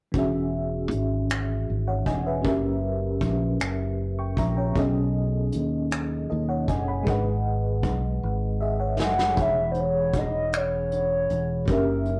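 A slow six-eight R&B groove in E major moves at 52 beats per minute in dotted quarters, with a straight, unhurried feel and a sensual mood. A vintage brush drum kit sets the pulse with finger snaps, hi-hat, a tight kick and a medium-tuned snare, its dark, smooth sound rolled off at the top, while a growly fingered electric bass holds the low end. An FM electric piano with tremolo carries the accompaniment through chords such as E6, F#7b9, B13 and G#m7, its mellow tone marked by a fast attack, a decaying tail and a noise layer. Both drums and piano play a fill from 8.2 to 9.4 seconds. During that fill, at 9.0 seconds, a hollow, woody synth lead enters with a soft attack, sustained notes, vibrato and a warbling chorus, just ahead of the new section at 9.4 seconds. The rough rehearsal-room recording has moderate studio ambience and warm saturation that gives the whole a warm character, and the clip is cut from a longer piece.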